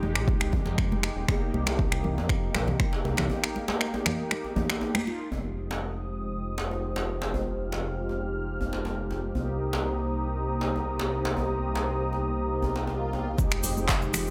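The punchy, overdriven electronic kick anchors this driving afro house excerpt in F minor at 119 BPM alongside a deep house kit of snaps, claps and metallic hats, bright high-tuned congas, a deep djembe with metal rattles, a rumbling detuned saw bass and round, brassy synth stabs with phaser and 12-bit grit, while a moody analog pad enters at 5.3 s as a filter sweep unfolds, a very quiet swell and impact arrive near the close, and a grainy cabasa appears at 13.4 s.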